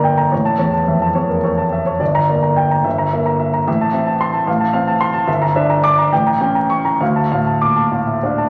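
A recital hall's lush, lingering reverb, about 1.7 seconds long, surrounds this short passage cut from a longer piece, with a vinyl crackle running beneath it. It is a romantic classical character piece for solo grand piano, bittersweet and passionate in mood, moving in 6/8 at roughly 64-76 beats per minute in dotted quarters with a free, rubato feel. The piano sounds clear, intimate and natural, placed up front, with the audible noise of its action adding closeness, and it spans G1 to D6 across the full 8.5 seconds. The harmony travels from A through Gm, Edim/G, Am, F/A and Em7b5/G to a tense A7b9 at 6.1 seconds, settling on Dm at 7.0 seconds. The instrument is tuned slightly bright, to A4 = 443 Hz.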